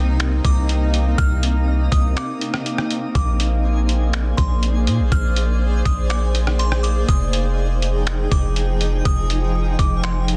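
A half-time 4/4 groove at 122 BPM from a gritty, pitched-down trip hop sampler kit of thumpy kick, rim click, hi-hat and finger snaps, entering at 0.2 s with a break from 2.2 to 3.2 s, anchors this ethereal, melancholic cloud-rap excerpt, where a deep, mellow sine 808 bass sits up front beneath a blurred, evolving granular cloud pad pumping with sidechain through Cm9, Bb9 and Fm9, while a delicate, warbling FM tine bell with chorus, phaser and delay tinkles high above and a sparkling granular texture shimmers in the background, the piece tuned to A4 = 437 Hz under a dense, heavily limited modern master.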